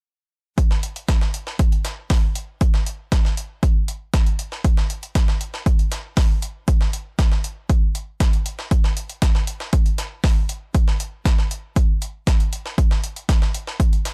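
A punchy analog kick drum sits up front from the first moments, driving this trippy acid house excerpt in a straight 4/4 pulse. Beneath it, a gritty, pitched-up breakbeat kit of compressed hi-hats and a high-tuned snare plays at a much lower level, its high-passed hits carrying a tape-like warmth. The sound is dry, with little reverb around the drums.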